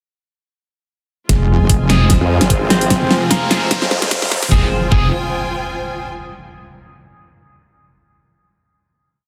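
A half-time 4/4 groove at 149 BPM, swung on the 16ths, drives this chaotic and menacing heavy wobble dubstep piece in F minor. A knocking, tape-warm electronic kick anchors the beat beside a layered dubstep kit, up front, with a huge snare and bright closed hats. Beneath them, a heavy, saturated sawtooth wobble bass holds F1, and a second, formant-sweep wobble bass joins at 2.2 s with modulated phrases of changing wobble speed. Over these, an electric guitar at the edge of break-up picks a repeating riff melody in octaves through lush chorus, a low-pass filter and dub echo, while a double-tracked high-gain guitar adds sparse, echoing distorted chord stabs in the background, one shape moved in parallel. A thick, warbling vintage unison pad and a biting, intense string section with vibrato sustain chords behind, both pumping to the sidechain. The whole piece is a build from 1.3 s, with a drum fill, filter sweeps, a riser and an impact, that lands on a final chord at 4.5 s, all with light reverb and a dense, heavily limited master.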